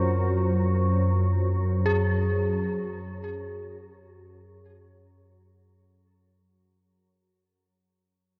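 In free time, this ominous ambient fragment, cut from a longer piece, rests on an up-front organ-like drone with a slow attack and ensemble chorus, while a deep, moody analog pad of detuned, ring-modulated waves holds sustained chords and fades out across its 6.6 seconds. Alongside them, an eerie, inharmonic FM synth bell plays arpeggios on G#4 with chorus, phaser and delay, lingering until 7.4 seconds. The production is dark and warm, bathed in a huge ambient reverb with an 8.1-second tail.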